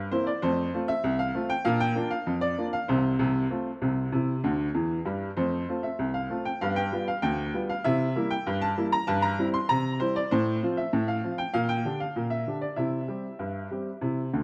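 Ragtime piano in F major at 97 BPM in a straight 2/4, jaunty and cheerful, with a bright upright piano playing solo from C2 to C6 across this excerpt cut from a longer piece. The piano's brilliant, woody tone sits up front with tape echo, and it breaks into a short fill from 4.4 to 5.4 seconds. The harmony moves through F, Bb, G7 and C7 before landing on Gm/Bb and C, heard in a dry, close 1970s-style studio sound with moderate small-room reverb.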